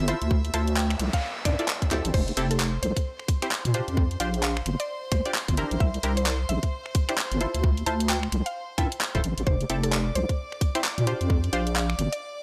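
A deep, wobbling bass with a mellow, square-and-sine tone and chorus sits up front in this sunny, soulful UK garage cut, riding a two-step groove at 131 BPM in F major with 16th-note swing, while an overdriven electronic kick and a layered garage kit of hi-hat, handclaps, finger snaps and crash cymbal punch through studio reverb. Punchy, wave-folded chord stabs with chorus and delay and a woody, round FM synth pluck carrying the melody move through Dm9, Fmaj7, Bb6 and C7. Behind them an intimate violin section holds sustained chords with light vibrato and sidechain pumping, and a noise sweep passes in the background from 0.7 to 2.1 seconds, all in a digital ambience cut from a longer piece.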